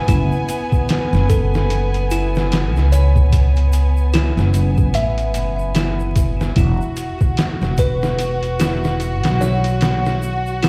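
Vinyl crackle and a large studio reverb frame this melancholic, hypnotic trip hop excerpt, which sounds as if it were played back through a big sound system in a bare room. Up front, a gritty, pitched-down sampler-style drum kit with a thumpy kick, medium-tuned snare and hi-hat carries a compressed, tape-warm character and a swung groove. Beside it sits a woody pizzicato upright bass with steel strings. A chamber violin section holds soft-attack chords, bowed sul tasto with light vibrato and a smooth, intimate top. Meanwhile a delicate, slightly out-of-tune music box tinkles through arpeggios with delay, and a close, dry tube shaker stays in the background. The harmony rests on F#m7 before moving to E5 at 6.6 seconds.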